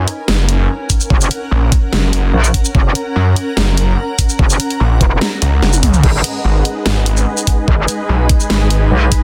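Chaotic and heavy, this half-time wobble dubstep excerpt opens mid-drop with a snarling, growling distorted saw bass and a blurred, evolving granular cloud pad, joined by a dubstep kit with a huge snare, a knocking electronic kick at 0.9 seconds and a metallic, chorused wobble bass at 1.1 seconds, before a drum fill at 5.7 seconds brings in lush, pumping supersaw chords at 6.0 seconds, all in a dense, heavily limited mix with the basses and drums up front.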